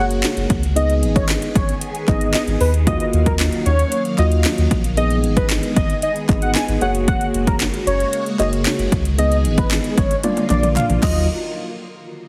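A straight 4/4 house pulse at 114 BPM drives this bittersweet, energetic dance-pop drop, with an overdriven, punchy drum kit up front, its cracking snare and metallic hats joined by very quiet, crisp group handclaps and a drum fill at 10.2 s. A deep, saturated sub bass and a mellow tine electric piano pump against the kick, while a vintage string machine swirls through phaser and ensemble chorus beneath a thick, detuned unison lead carrying the melody with vibrato and delay. The chords move through Gbadd9, Abm and Ebmadd9 before a Bb near the end, all set in light reverb with a heavily compressed, radio-like sheen.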